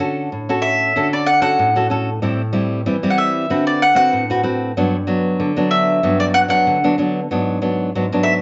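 Fingerpicked nylon-string guitar opens this short excerpt of a sunny, joyful samba, setting a straight 4/4 pulse at 94 BPM in D major. The guitar's fresh strings give it a warm, classical tone, with finger squeaks along the way as it plays the accompaniment from G2 to B4. At 0.6 seconds a picked mandolin enters with the melody, its double strings sounding woody and up front as it plays between D5 and F#5, slightly louder than the guitar. The harmony moves through Dmaj7, Am7, D6 and Gmaj7 before reaching G#m7b5 near the close. Both acoustic instruments sit close and warm in a moderate large-studio reverb, and the top end is gently rolled off. The mandolin stops at 8.3 seconds and the guitar continues until 8.4 seconds.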